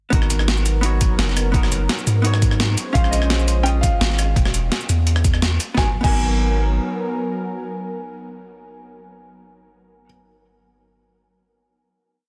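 Rolling two-step breakbeats drive this short, melancholic liquid drum and bass piece: a gritty, overdriven sampler-style kit of shaker, rim clicks, closed hats, snare and crash rides over a thumpy electronic kick, both dropping out at 6.1 seconds, while a deep, up-front 808-style sine bass holds long gliding notes. A clean, dark hollow-body jazz guitar plays rootless held chords with syncopated pushes through digital delay, and a smooth, warbling analog pad with chorus and an airy noise layer sustains the harmony underneath. From 2.9 seconds a mellow, intimate concert grand piano, its action noise audible, adds song-like motif phrases soaked in dub echo, carrying the final chord with the guitar to the close in a dry, dense, heavily limited mix.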